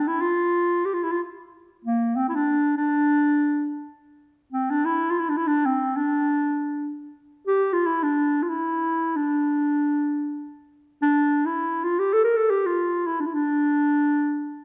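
This excerpt of Turkish makam ensemble music features a solo clarinet, heard from 0.0 to 14.6 seconds in a melancholic, longing mood. The clarinet has a warm, classical-style tone and sits up front, moving between Bb3 and Bb4. Its unaccompanied line carries the whole passage and keeps the focus on the instrument's voice. A wet recital hall reverb surrounds the clarinet, adding a spacious glow to each phrase. The recording is a short cut from a longer piece, so it feels like a single moment of yearning rather than a complete statement.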